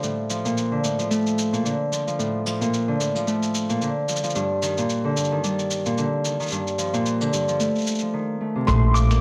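Light reverb and a studio ambience frame this brief folktronica passage, with a vinyl crackle running beneath it and a delicate, warm mood throughout. An up-front Celtic harp, bright and thumb-plucked, carries ringing arpeggios in its low register from the start. Under it, a muffled, compressed electronic shaker and hi-hat sit quietly, re-recorded in a large room and lightly swung. The chords move from Bbmaj7 through Ebmaj7, Gm7 and F7, and a short break arrives at 8.1 seconds. At 8.7 seconds the harmony returns to Bbmaj7 as a woody, growly pizzicato upright bass lands up front on a low note, a very quiet, thumpy electronic kick taps once, and a felt-muted upright piano offers a few high, intimate notes with audible action noise before the cut at 9.2 seconds.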